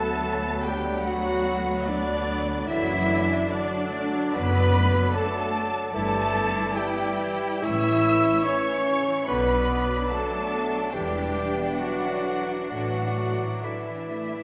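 Classical slow romantic movement for symphony orchestra, tender and serene, where a lush, expressive violin section carries the melody over a clear, distant second violin line, an airy silver flute, clarinet and oboe in the background, a bright, close viola section and mellow bassoon in accompaniment, dark sustained French horn chords, and a focused cello and smooth double bass section holding the bass until 13.5 seconds, all with rubato and set in a wet concert hall reverb.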